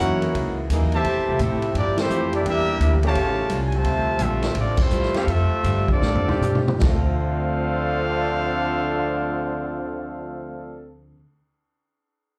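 Heard through a club PA with light reverb, this brief, sultry big band swing excerpt puts a smooth-topped trumpet section up front on the melody over a woody pizzicato upright bass, with two clear trombone sections carrying a second line and sustained chords, a boxy picked guitar in the background, and a dark-cymbaled vintage drum kit that plays a fill from 6.0 seconds as the band slows and drops out at 6.9 seconds.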